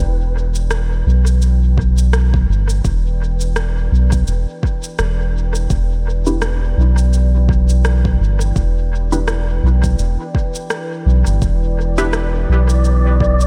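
A round, soft sub bass sits up front in this meditative, hazy stretch of ambient dub, holding low notes with a gentle tube-saturated weight from the opening moment. Above it, a dark, detuned pad fades in across the whole passage, its sustained chords warbling through chorus and its own reverb with a vintage, moody glow. Electronic cabasa and rim click arrive at 0.6 seconds with small-room reverb and dub echo, and an overdriven, layered electronic kick joins at 1.8 seconds, giving the swung groove a deep pulse. At 6.3 seconds a muted, filtered chord stab enters, plucky and short-decaying, colored by phaser, subtle chorus and dub echo, before a breathy, wind-like tuned noise texture drifts in near the end, sitting in the background. The mix itself stays fairly dry, letting the bass and the hazy pad define the space of this piece cut from a longer work.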